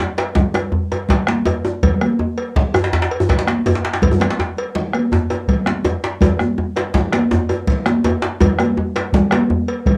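Set in a rolling 12/8 with a straight feel, this short cut from a longer West African traditional drum ensemble piece moves with a driving, earthy pulse. A tight, cracking djembe opens the texture, compressed and saturated, and a second, medium-tuned djembe with metal rattles joins within the first second, its vintage, band-limited tone sitting up front. A metallic cowbell rings out in a live room sound, while a round, close bombo anchors the low end and stands as the loudest part. Bright, high-tuned congas with a thin-skinned, soft-handed touch come in alongside the bombo, heard at a distance in a large room yet still up front. Light reverb and the grain of a home cassette recording give the whole ensemble a raw, homespun character, with the first djembe dropping out at 9.5 seconds as the others carry through to the end.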